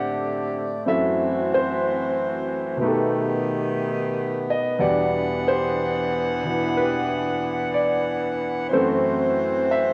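A mellow saxophone section holds sustained chords up front with a soft attack, light vibrato and a smooth top, moving through Am7, F#m7b5, Baug7 and Em9 in this melancholic, intimate jazz ballad in E minor at 61 BPM with swung eighths. A natural-sounding baby grand piano accompanies close by across the full 9.9 seconds. The home cassette recording is bathed in a wet spring reverb, with its top end tapering off around 10.9 kHz, in a passage cut from a longer piece.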